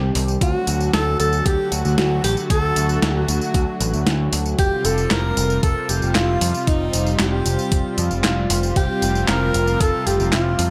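A breathy, close-miked tenor saxophone carries a moody, nocturnal synthwave melody from 0.4 seconds, with light vibrato, scooped notes and a diffuse ambient delay, shadowed very quietly by a warbling FM electric piano with a soft pad layer. At 115 BPM in straight 4/4, a detuned sawtooth analog pad with chorus and a dark, round, overdriven picked electric bass share a sidechain pumping, while a thumpy overdriven electronic kick and a clean 12-bit drum machine of handclaps, hi-hat, snare and tambourine sound re-recorded in a large room. The harmony moves from D to Fadd9 at 4.6 seconds in a dreamy, reverb-soaked mix, cut from a longer piece.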